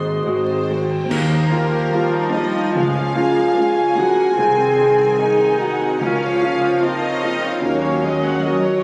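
Cinematic, emotional film score for orchestra, moving and bittersweet, unfolding in a loose rubato. A floating, sul tasto violin section carries the melody over a darker, lightly vibrato second violin line. Pure, soft-attack violas and close, intimate cellos and double basses fill out the harmony and the low end, while mellow French horns hold tight sustained chords. A dark, vintage baby grand piano sits in the background with audible action noise and long sustain. An airy flute, a background clarinet and a warm solo cor anglais add brief touches before dropping out at 0.7 seconds; bright cymbals with concert bass drum strike an accent at 1.1 seconds, and round, softly malleted timpani enter at 2.8 seconds. The whole is set in moderate scoring stage reverb but captured on a phone in the room, with studio ambience and vinyl crackle, in a short cut from a longer piece.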